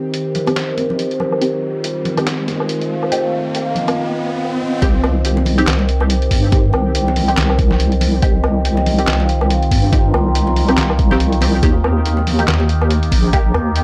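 A resonant sawtooth drone with moving overtones opens this meditative, heavy deep dubstep excerpt in C minor at 141 BPM half-time with a 16th-note swing, soon joined by a muffled, pitched-down sampler-style kit of handclaps, hi-hat, snare and woodblock, bright vintage congas and bongos in the background, a muted, filter-plucked dub chord stab with phaser and echo that is filter-swept through the build-up, and an electronic riser, before the drop at 4.8 seconds brings in a layered electronic kick and an up-front, dark, detuned wobble bass with tube saturation, all in a dry, gritty mix as the harmony moves from Cm to Eb at 11.6 seconds.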